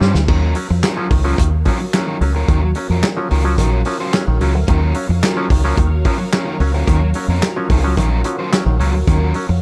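A dark, dry production sets a short funk excerpt at 109 BPM, cool and hypnotic, opening on a drum fill from a small-room soul kit with dark cymbals, a tight kick, handclaps and hi-hat sitting up front alongside a round, punchy, foam-muted fingered bass that dominates the low end. A crunchy overdriven picked guitar and a hollow, nasal clav through a combo amp add stabs and accompaniment, while from 0.3 seconds a lush vintage string machine with ensemble chorus holds a sustained Ebm9 chord in the background.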